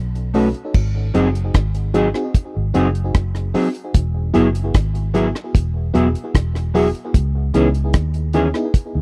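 A dry, close 1970s-style studio sound frames this tender, romantic lovers rock reggae excerpt, where a round, punchy, foam-muted fingered electric bass and a deep acoustic drum kit with a tight kick, rim click, hi-hat and crash sit up front beside clean, mellow electric guitar stabs bathed in lush chorus, while a full-bodied FM electric piano with tremolo and tape echo adds dark accompaniment over chords moving from B7 through G#7 and Eadd9 to C#m7.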